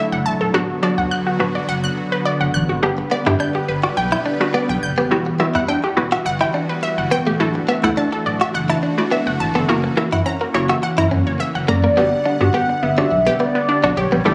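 Captured on a phone in a room with a club-like reverb and light digital ambience, this excerpt of a bittersweet, driving pop track moves at 105 BPM in a straight 4/4, opening on a hollow, bouncy square pluck with chorus, a smooth supersaw holding sustained chords, lush unison-pluck arpeggios trailing tape echo, and a thick, saturated sub bass. At 3.0 seconds a bright, compressed clean electric guitar joins up front with an analog-chorused riff, over chords drifting from Dadd9 through Bm/D, G, Emadd9 and F#7. At 11.7 seconds, just before the music shifts to Gmaj7 at 12.0 seconds, a velvety synth lead, coloured by chorus, phaser, tape echo and vibrato, enters and carries the melody to the close.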